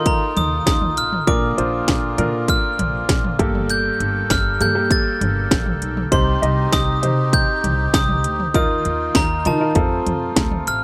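Uplifting and hopeful, this short piano-driven pop excerpt sets a bright, bell-like glockenspiel melody with digital delay over clear, woody upright piano chords, sweet reedy accordion with light tremolo tuning, a pizzicato upright bass and a punchy, up-front electronic house drum kit with cracking snare and metallic hats that joins at 0.1 seconds, all in a dry sound.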